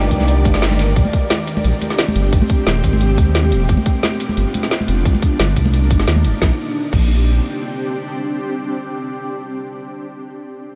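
Lush and dreamy, this short cut from a longer liquid drum and bass piece moves at 176 BPM in Bb major, with chords drifting from Cm9 through Abmaj9 and a rootless G7 before returning to Cm9 and Bb6. An ethereal, airy pad holds sustained chords throughout, its slow-attack tone shimmering with ensemble chorus, built-in reverb and tremolo while sidechain pumping makes it breathe against the beat. Up front, a deep, rumbling detuned saw bass supplies a dark, beating low end until 7.4 seconds, and a bright, barky tine electric piano appears only briefly in the background, coloured by chorus and tape echo. The drums pair a tight, layered electronic kick with a produced kit of woody snare, metallic hats and crash, joined for a moment by a gritty, high-tuned breakbeat sampler kit with filtered hats and snare, while close, dry congas with hard hands add background detail. Everything sits in a huge ambient reverb that soaks the mix in a hazy, dreamlike space.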